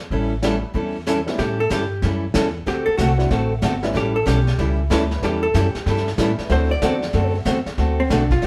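A dark, compressed hollow-body jazz guitar takes a clean, picked solo from 1.4 s, riding over a down-home, swinging western swing groove at 188 BPM in A mixolydian, cut from a longer piece. Beneath it, a boxy ladder-braced acoustic guitar with old strings and a thumpy gut-string upright bass sit up front, while a brushed vintage kit with a punchy kick and rolled-off top keeps time. A detuned, jangly honky-tonk upright piano plays in the background until 7.0 s, with the band captured live in one room under moderate reverb as the harmony moves through A9, A7 and D9.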